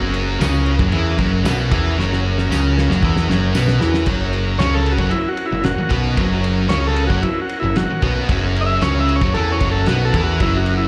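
A straight 4/4 garage rock groove at 114 BPM in F# mixolydian drives this rowdy, swaggering live club excerpt, with a thick, double-tracked fuzz guitar riff and growling, overdriven picked bass up front, a cloth-damped, thuddy drum kit with dark cymbals and a fat snare in the background, a reedy, heavily vibrato-laden combo organ holding sustained chords behind them, a jingly tambourine between 0.4 and 3.7 seconds, a drum fill from 2.0 seconds, and a buzzy, overdriven combo organ taking a solo melody from 4.6 seconds, all under light club reverb.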